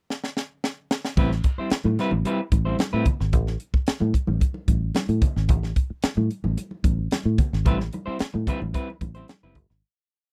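A dry, close studio recording with a 1970s feel and little reverb opens this short, sly and cool funk piece in A minor at 111 BPM. A crisp fusion drum kit starts alone with a fill across the pickup bar, its high-tuned snare, punchy kick, hi-hat and crash sitting up front in a polished, airy groove with ghost notes. At 1.2 seconds the music settles onto an Am9 breakdown, where a round, foam-muted fingered electric bass plays a syncopated riff anchored on the downbeat, dotted with muted ghost notes and chromatic approach notes. A dark, clean electric guitar comes forward with picked sixteenth-note rhythm work and muted scratches, playing only in short stretches, while bright, thin-skinned congas with soft hands keep a damped, vintage groove in the background. The track fades out from 7.7 seconds to its close.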